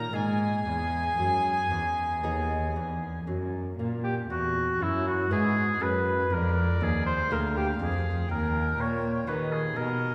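A solemn, flowing baroque-style sonata movement in G# minor at around 57-61 BPM with rubato, opening on a dark, nasal gut-string violin melody over a warm oboe second line, a bright, fingerpicked lute with delicate double strings, and a reedy bowed cello bass, all heard from further back in a wet concert hall, as the chords move from G#5 through E and A#7 to D# in a fragment cut from a longer piece.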